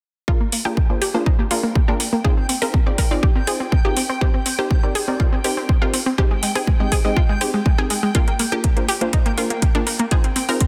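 A punchy, tape-warm electronic kick drum opens this short progressive house cut alongside a round, chorused analog pluck playing bright arpeggios and a lush, detuned unison pluck adding wave-folded stabs with a moving notch. Metallic electronic hi-hats join at 0.5 seconds, and both plucks pump against the kick and trail off into dub echoes, while a filter sweep runs across the arpeggio for the whole passage. At 1.7 seconds a reversed, dreamy granular texture swells in from the background, sustaining a single high note within its own reverb. The harmony moves through Bb7, Fm7 and Abmaj7 before returning to Bb7 and Fm7, giving the straight 4/4 groove an expansive, emotional pull. The drums sit up front in a light digital ambience, and the master is dense and heavily limited.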